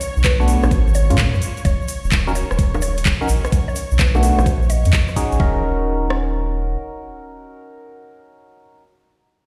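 A skippy two-step swing at 128 BPM drives this moody UK garage piece in Eb minor, where an overdriven electronic garage kit of bongos, handclaps, metallic hi-hats and rim clicks, joined by a grainy egg shaker, plays through the opening drop until 5.4 s, while a second overdriven kit adds a knocking kick from 0.2 s, a deep, round dub sub bass sits up front, a hollow, nasal organ stab and a woody, warbling FM mallet pluck carry chorus and tape echo, and a lush violin section holds sustained chords with sidechain pumping in the background, the mix ringing with stone-room reverb as if played on a big sound system.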